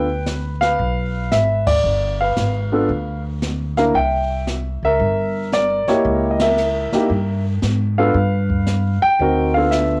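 A home cassette recording with moderate small-room reverb captures this playful, swinging jazz piano trio excerpt at 114 BPM in G mixolydian, moving from G7 through C7 and C#dim7 back to G7. An up-front concert grand with deep bass carries the melody, a woody, growly pizzicato upright bass on steel strings sits beneath it, and a brushed kit with dark cymbals, a medium-tuned snare and a boomy kick enters at 0.3 seconds. The whole band hits accents together at 1.6 and 6.3 seconds.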